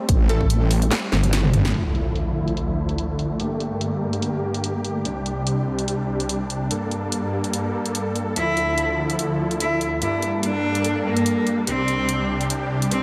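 Drenched in a lush hall reverb, this dreamy-sounding cut from a longer heavy wobble dubstep track in D minor at 145 BPM, with a swung half-time feel, opens aggressive and chaotic on a drop where a punchy electronic kick and a resonant, saturated wobble bass hit up front beside a big-room dance kit of handclaps, hi-hat, snare and toms with filtered hats, snare and toms, then at 1.7 s an electronic impact lands as huge, bright, detuned supersaw chords with subtle chorus and sidechain pumping move through a filter sweep, and a rich, intense bowed cello with vibrato and diffuse ambient delay enters at 8.4 s.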